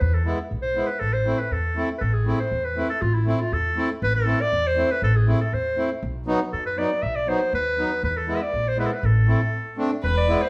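An upright bass, woody and thumpy, and a clear, classical-style clarinet open this festive, bittersweet klezmer excerpt in a lively 2/4, joined at 0.2 seconds by a reedy, close-miked accordion over chords moving from E to A minor, B and back, before a brief break at 9.5 seconds gives way to a single bowed violin with focused vibrato entering at 10.0 seconds, the band captured live together in a large, reverberant studio room.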